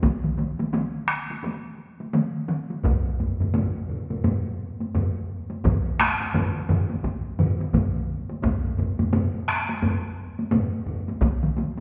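Japanese traditional taiko drumming with a driving, ceremonial mood and a swung sixteenth-note feel, cut from a longer piece, where three up-front taiko ensembles play from the start, one struck with hard sticks in a small room, one with heavy sticks sounding distant in a large room, one with heavy sticks and a vintage, band-limited tone, while a fourth, close and dry under heavy sticks, joins at 2.8 seconds, all carried by the lingering reverb of a recital hall.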